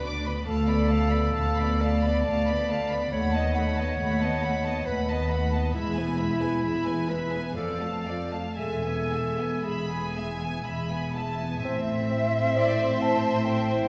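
A wet, roomy sound on a scoring stage places the listener further back in the hall, with a reverb tail that lets the orchestra bloom. This is a slow, romantic classical movement in A minor and 3/4, moving with rubato at around 56-74 BPM in a yearning, solemn mood. A dark violin section carries the melody high in its range, bowed sul tasto with light vibrato and a soft attack, while a second violin section adds a pure, floating line beneath it. A clarinet shares the second-line duties alongside violas in accompaniment, and cellos and double basses anchor the bass, the basses sounding woody. At 11.6 seconds, as the harmony settles onto A minor, an airy, hollow flute joins with a second line, a very quiet bassoon holds a single accompanying note, and a distant French horn section sustains background chords. This is a short passage cut from a longer piece, lasting just under 14 seconds.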